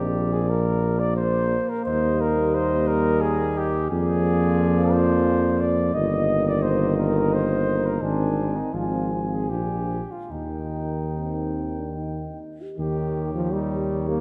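Set in a moderate church reverb, this tender classical hymn for brass band unfolds in Eb major and 3/4 at a rubato 70-92 BPM, with a dark cornet carrying the melody over a mellow, close-miked flugelhorn second line up front, a punchy tuba bass, and, in the background, a clear trombone with a smooth top and a distant, roomy euphonium with light vibrato, all five playing throughout as the harmony moves from Bb to Eb and ends on Eb7 at 12.8 seconds in this short excerpt from a longer piece.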